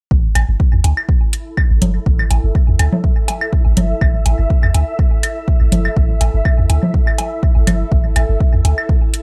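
A swung 123 BPM groove in 4/4 drives this quirky, hypnotic minimal techno excerpt, where a deep, up-front kick and a punchy, tube-saturated sine sub bass pumping under sidechain anchor an A5 chord, metallic layered hi-hats and overdriven claves, woodblock and congas with digital delay arrive at 0.4 seconds, and an ethereal, detuned pad with ensemble chorus and built-in reverb drifts in at 1.0 seconds over a dark, dry production.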